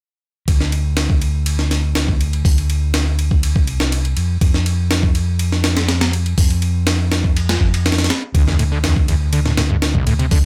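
An overdriven fingered electric bass and a sampler-style breakbeat kit open this gritty, energetic breakbeat cut together at 0.5 seconds, driving a straight 4/4 groove at 122 BPM. The bass is amped and punchy, sitting low between C2 and F2 with a low-pass filter rounding its tone. The compressed drums pair a thumpy kick and a high-tuned snare with hi-hat and ride cymbal, and their re-recorded, small-room grit keeps them up front. The harmony rests on Csus2 before dropping to an unharmonized stretch at 4.2 seconds. At 8.3 seconds the music shifts to Dsus2 as a screaming acid line bursts in, its squelchy, resonant sawtooth tone marked by a filter sweep, fast attack and decaying notes, coated in distortion, chorus and digital delay. The mix is dry and close, with all three parts pressed forward.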